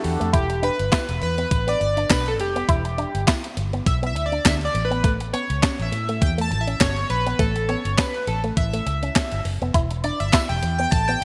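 Chorused polysynth, envelope-filtered guitar, muted fingered bass and a clean 12-bit drum machine start together in this early-eighties boogie funk excerpt, a danceable, funky groove at 102 BPM in E dorian with a swung sixteenth feel, moving from Em7 to A7 and back. The glossy pulse-wave polysynth carries sustained accompaniment with filter sweeps and an analog polysynth solo from 0.3 seconds, while the twangy picked guitar riff adds a subtle chorus, the dark, round bass sits up front, and the thumpy drum machine brings handclaps, hi-hat and a medium-tuned snare re-recorded in a large room. A jingly, very quiet tambourine joins at 0.9 seconds, and light digital ambience completes the bright 1980s-style digital production.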